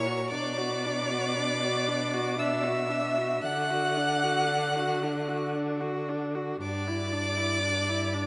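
A clear, focused violin sings the high melody of this serene, slow romantic string-quartet movement in 3/4, moving with rubato at 56-61 BPM over a second violin line, a smooth, even viola accompaniment and a cello bass, the lower three rich with vibrato and each bowed by a single player, as the harmony passes from Bm to D to Em7/G inside a vast, echoing cathedral reverb in this brief passage cut from a longer piece.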